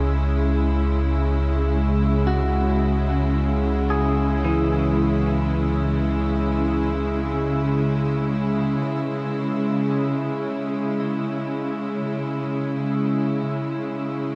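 Bathed in a huge, wet reverb with a dark production, this reflective, spacious ambient excerpt opens on a C#madd9 chord, its bright, biting string section sustaining chords up front with light vibrato while a clean, twangy electric guitar picks delayed arpeggios in the background. A round sine sub bass holds a deep C#2 and a very quiet glass harmonica adds an ethereal, beating shimmer until both stop at 8.8 seconds. The strings and guitar carry on alone, the guitar falling away at 13.5 seconds and the strings at 14.4 seconds.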